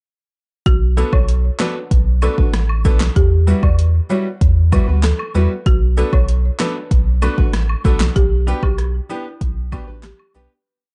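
Sultry and bouncy, this short dancehall piece in B minor at 96 BPM sets a woody, rustic marimba hook with tape echo over a round sine sub bass with slides and an up-front deep house kit of deep kick, fat snare layered with clap, hi-hat and rim click, while clear grand piano off-beat chords, fingerpicked nylon-string guitar chops and syncopated cabasa and woodblock join at 1.0 seconds, moving through Bm7, Emadd9 and G/B in a dark, reverberant mix that fades out from 8.2 seconds.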